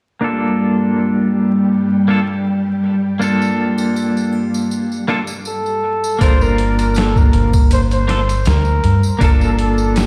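Heard through a big sound system in a bare stone room, with vinyl crackle, this smoky, cinematic trip hop fragment moves at 80 BPM in G minor with a light swing. It opens on a Gm9 chord from a twangy clean electric guitar with tremolo, tape echo and a filter sweep, beside full, sawtooth string-machine cellos with ensemble chorus that hold until 6.2 seconds. Faint tambourine and triangle enter at 3.2 seconds and a veiled, bucket-muted trumpet brings a jazz-style melody with light vibrato, scooped notes and dub echo at 5.5 seconds, before a gritty, pitched-down boom bap sampler kit with a thumpy kick and studio reverb arrives at 6.2 seconds alongside a dark, round, tube-saturated dub bass sitting up front.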